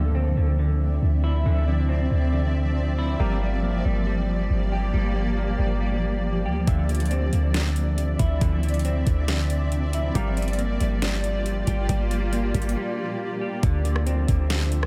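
Atmospheric cloud-rap hip hop in a half-time feel, melancholic and hazy, this cut from a longer piece opens with a blurred, detuned granular pad holding Dm9 and Gm7 chords under its own reverb and sidechain pumping, while a dark, clean semi-hollow guitar plays fingered arpeggios through analog chorus, low-pass filter and delay. A deep, boomy 808-style bass sits up front throughout, and a crisp, ringing fingerpicked kora adds background texture until 13.6 s. At 6.7 s a produced R&B kit enters with a knocking kick, deep snare, metallic hats and rim clicks, all dry and close.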